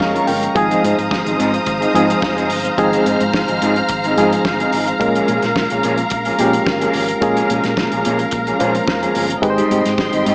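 Heard through a small speaker with light reverb and a small room's ambience, this glamorous, driving disco excerpt opens with a barky, lightly overdriven reed electric piano fill in the first 0.6 seconds, its fast tremolo continuing beside a dark, clean fingered electric guitar with subtle chorus, lush bowed strings sustaining chords up front, a round hollow-body bass and a soul drum kit with a fat snare and tight kick, all moving through Bbm7, Fm7 and Abmaj7.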